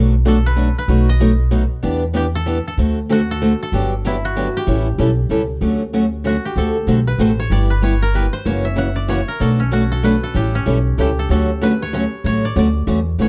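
A lively, charming gypsy-jazz waltz opens with a bright, picked steel-string acoustic guitar and a growly, thumpy pizzicato upright bass, both up front, while a dry koto played with fingerpicks carries the melody over a swung three-beat feel. At 5.6 seconds the koto moves into a woody solo over a new section, running through changes such as Dmaj7, G6 and F#7. Light reverb and a dark, warm production round out this charming excerpt from a longer piece.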